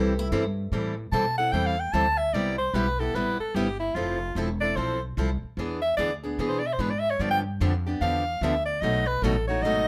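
Swinging at 148 BPM in A minor, this bittersweet excerpt of acoustic jazz manouche pairs a picked steel-string acoustic guitar with audible finger squeak and a woody, thumpy pizzicato upright bass, both present from the start, while a breathy, close-miked soprano saxophone with vibrato and a soft attack enters at 1.1 seconds to solo up front over chords moving from Am7 through Cmaj7, Fmaj7, E7 and G7 to B7, all set in a moderate club reverb.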